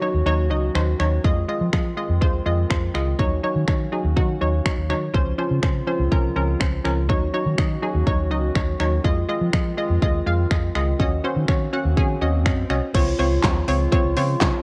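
A punchy, layered pop drum kit drives this energetic, confident dance-pop excerpt at 123 BPM in Eb dorian. Its fat snare, handclaps, finger snaps, hi-hat and crash sit up front beside a dark, round, foam-muted vintage electric bass, both arriving within the first second. A bright, hollow square pluck with chorus and a fast attack carries the accompaniment over Ebm7, Fm7 and Dbmaj7 chords, while a mellow woodwind section holds sustained chords with light vibrato in the background, and the pluck, bass and woodwinds pump against the sidechain. A very quiet electronic downlifter and swell mark the opening and the lead-in to 12.9 s, and the whole mix carries the worn, warbling pitch drift of old cassette tape inside a light digital ambience.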